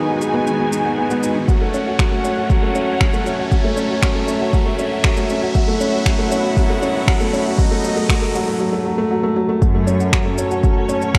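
A felt-muted upright piano sits up front, playing a soft, boxy riff with audible action noise and a short sustain, trailed by delay. This is melancholic, hypnotic piano-and-strings electronica at 118 BPM in F# dorian, cut from a longer piece. A distant, rich string section holds smooth sustained chords with light vibrato and sidechain pumping. Overdriven electronic shaker and finger snaps arrive almost at once, a deep, up-front electronic kick enters at 1.5 seconds, and an electronic riser builds until 8.6 seconds. At 9.6 seconds the drop lands, and a pure, floating cello section bowed sul tasto comes in as the bass, also pumping with the sidechain. The chords move from G#m7 through F#m to Bsus4 and back to F#m, set in a lush hall reverb with small room ambience and a dark, warm production.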